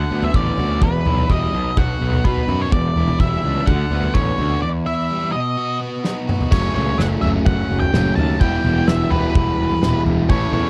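Indie rock at 126 BPM in E dorian, this short cut from a longer piece feels restless and cool, with a straight 4/4 pulse and a dry, close sound. A dark, fuzzy octave-fuzz lead guitar carries the melody through distortion and tape echo, while a bright, crunchy overdriven guitar plays a riff underneath. A growly, up-front fuzz bass with overdrive anchors the low end, and a loose acoustic drum kit with a punchy kick, medium-tuned snare, toms and dark cymbals sits in a small, pumping room. After a break from 4.6 to 6.5 seconds capped by a drum fill, a hollow-body semi-hollow guitar joins at 6.5 seconds with an overdriven riff bathed in lush chorus. The harmony moves among Bmadd9/D, Em and B before shifting to F#m and then Em for the closing stretch.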